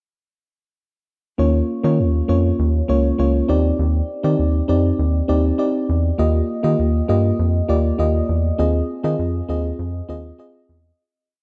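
A rubbery square bass sits up front in this short, nostalgic 1980s-style pop piece, playing a syncopated pop-funk line with chromatic approach notes in a hollow, bouncy, wave-folded tone with a quick filter pluck and a dark edge. Beside it, a warbling FM electric piano supplies syncopated chords in drop2 voicings, its vintage tone carrying a noise layer and fast-attack notes that decay. Both parts enter together at 1.4 seconds at a steady 100 BPM in straight 4/4, framed by light reverb that gives the sound a glossy sheen. The single verse moves over an Eb foundation through Bbm/Eb, Cmadd9/Eb and Ebadd9 before settling on Fm7/Eb. A fade-out begins at 8.6 seconds and carries the piece to its close at 11.0 seconds.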